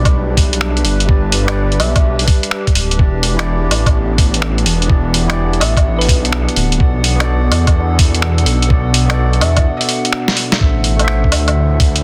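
A rainy, ghostly stretch of future garage opens on a warbling, nostalgic tape-like pad, a bright, clean tine electric piano with tape echo, and a menacing detuned saw bass that swells beneath them, all three pumping against the sidechain. A muffled, thumpy kick and a lo-fi sampler kit of finger snaps, hi-hat, woodblock and a soft-clipped snare sit up front with a swung sixteenth feel, while a round, tine-like thumb-piano pluck surfaces now and then in the background. A short break arrives at 9.7 seconds, and a drum fill leads back into the opening section at 10.6 seconds, set in a dense, heavily limited mix with little reverb.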